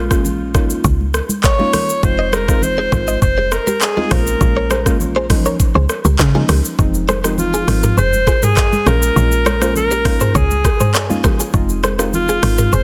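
A straight afrobeats groove rides on an up-front, electronic drum kit with a knocking kick, metallic hats, handclaps, rim clicks, shaker and toms, given size by a large room. Close, dry congas played with soft hands sit in the background, while a woody log drum bass punches underneath with quick, decaying notes. A soft, round pluck with chorus fills in dark, gentle chords cycling through Bbm7, Db69 and Fm7. Carrying the melody is a breathy, whispered alto saxophone, intimate and up front, trailed by tape echo. From 2.2 seconds a bright, clean electric guitar adds a picked, compressed riff bathed in lush chorus and tape echo. The hypnotic, sultry mood is set in digital ambience and a dense, heavily limited modern master, in this passage cut from a longer piece.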